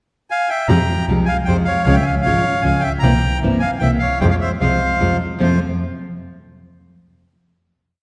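A bandoneon opens this brief, sultry and tense tango at 0.3 s with a reedy, up-front pickup, shaping song-like motifs partly doubled in thirds, in F harmonic minor at 153 BPM in a rubato 3/4. At 0.7 s a fingerpicked nylon-string guitar, deep and classical, enters with short tango chords alongside a boxy bowed double bass with vibrato, accenting beat one in waltz time. The harmony moves through Fmadd9, Db, C7 and Fm before resolving to an F major chord at 5.4 s, all heard from further back in a reverberant concert hall.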